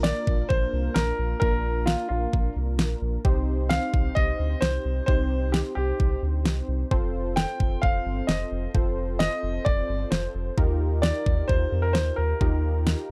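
Synth-pop in Bb major at 131 BPM in a straight 4/4, this short, upbeat and bright fragment is cut from a longer piece and runs about 13 seconds. A clear, polished baby grand piano carries the melody up front, moving between F4 and G5. Beneath it, warm analog keys built from detuned sawtooth tones with a filter sweep and chorus supply the accompaniment, their fast-attack notes decaying between Bb3 and C5. A round, deep analog bass blending sawtooth and sine sits up front with sustained notes and transformer saturation, spanning F1 to F2. The electronic, layered pop drum kit, tape-warm and up front, pairs a knocking kick with a fat snare, and the whole is a dry, gritty hardware recording that moves from Bb through Cm and F to Ebadd9.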